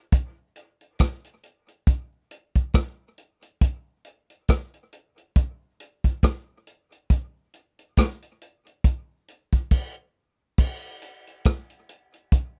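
A slow reggae groove at 69 BPM in 4/4, swung on the sixteenths, is carried entirely by a vintage acoustic drum kit that plays from 0.1 to 12.6 s, using kick drum, rim click, hi-hat and crash cymbal. The kit sits up front with a punchy kick, dark cymbals and a rolled-off top, captured dry and close in a small room with light reverb that gives it a natural, 1970s studio character. The mood is spacious and hypnotic, and the pattern moves into a new section at 10.6 s before this short cut from a longer piece ends.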